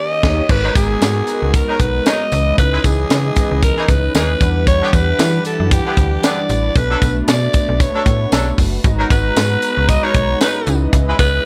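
Early-eighties boogie funk at 115 BPM in G# minor, this late-night, slick excerpt opens with a band accent as a raspy, growling alto saxophone carries the melody up front, breathy and close-miked with scooped notes and a slapback echo. Beneath it, a tight funk drum kit with a high-tuned snare and a snappy, metallic FM slap bass drive a lightly swung groove from 0.2 seconds. Round, detuned synth brass with chorus, a roomy horn section playing a second line from 0.6 seconds, veiled muted strings in the background and a jingly tambourine fill out the minor-ninth chord changes.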